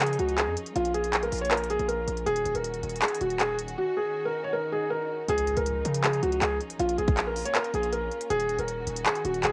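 Trap hip hop at 159 BPM in a half-time feel and Eb minor, menacing and melancholic, where a soft, felt-muted upright piano carries the melody up front over clear, bowed symphonic strings holding sustained chords, a punchy sine-based 808 bass with a noise layer, a fast attack and a decaying tail, and a trap kit of hard-clipped kick, crisp hats and handclaps roughened by 12-bit sampler grit, while a background swell from 4.1 seconds breaks into an impact at 5.3 seconds, all within a light-reverb, cassette-tape home recording cut from a longer piece.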